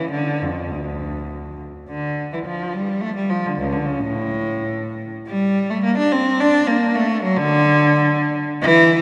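A single bowed cello sits up front in a wet church acoustic, its rich, vibrato-laden tone carried on a long reverb tail of 3.3 seconds. This short excerpt comes from a baroque-style suite movement for unaccompanied cello in D minor and 3/4 time, moving with a rubato feel at roughly 99-111 BPM. The mood is flowing and serene, with one player drawing a smooth, even line that spans a range from C#2 to D4. The opening phrase gives way to a new passage at 1.9 seconds, and the cello plays alone throughout until the cut at 9.0 seconds.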